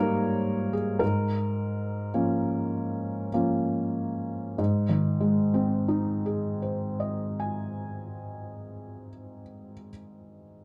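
A rubato 3/4 pulse drifts between 46 and 60 BPM, slowing through the opening 4.6 seconds, in this hopeful, intimate neoclassical minimalist piano piece in Ab major, tuned to A4 = 439 Hz. A solo felt-muted upright piano sits up front with a soft, mellow tone and audible action noise, ranging from Ab2 to Ab5 over Eb/Ab and Bbm7/Ab harmonies before settling on Ab at 4.6 seconds. Light reverb and a dark production give this fragment of a longer work a close, natural feel.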